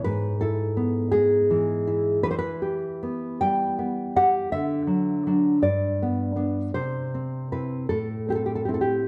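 In an unhurried 6/8 with uneven, freely stretched beats, this wistful, melancholic fragment of a romantic piece for solo nylon-string guitar drifts through E/G#, Em, D, G, C and Am. The guitar sits up front with a dark, full-bodied, thumb-plucked tone in a deep classical register, ranging from G2 to G5. A moderate recital-hall reverb and a dark, warm production lend the 9.1-second passage an enclosing glow.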